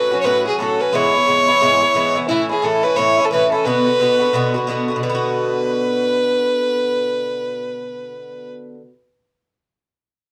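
A single bowed fiddle leads this wild, dark and lively Celtic hornpipe, its clear, smooth melody carried with light vibrato and an even touch, sitting up front until 8.5 seconds. An Irish bouzouki plays accompaniment alongside it, picked on metallic double strings with a bright acoustic ring, moving through F#m, E/G#, A and Bm under a swung eighth-note feel. This short cut from a longer piece sits in moderate studio ambience with a dark, warm production, and the bouzouki rings on to 8.9 seconds.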